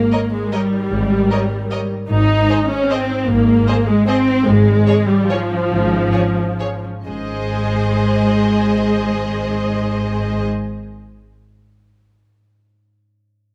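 Captured with close, detailed microphones and a light reverb, this short excerpt from a longer piece is a sweeping, elegant orchestral ballroom waltz in Ab major, played in 3/4 with a rubato feel between 125 and 164 BPM. An up-front viola section carries the accompaniment with a warm, lush tone, expressive vibrato and portamento, while a distant, rich violin section sings the focused melody above a soft-attacked, lush second violin line. Underneath, a smooth, even cello section sits in the background, joined by a bowed double bass section with a rich chamber sound, both anchoring the harmony on Ab. A mellow concert harp rings in the background with fingerpicked arpeggios across its range. The harmony moves through Eb7/Ab, Ab and Db/Ab before settling back on Ab, the tempo slows between 3.9 and 7.1 seconds, and the harp sounds alone after the strings stop at 10.4 seconds, ringing on until 11.3 seconds.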